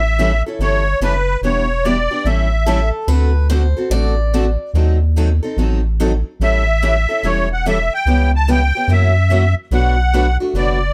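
Acoustic string swing in a playful, lively jazz manouche vein at 145 BPM in A mixolydian, this close, dry excerpt sets a reedy, shimmering musette accordion melody up front over a round, dark analog bass with a filtered pluck and moving notch, two bright, boxy parlour steel-string guitars with fresh strings and finger squeak comping beneath (one sitting in the background), and a brief picked swing guitar line between 2.7 and 4.7 seconds, as the accordion drops out until 6.4 seconds while the chords move from A7 through D#dim7 to Bm7.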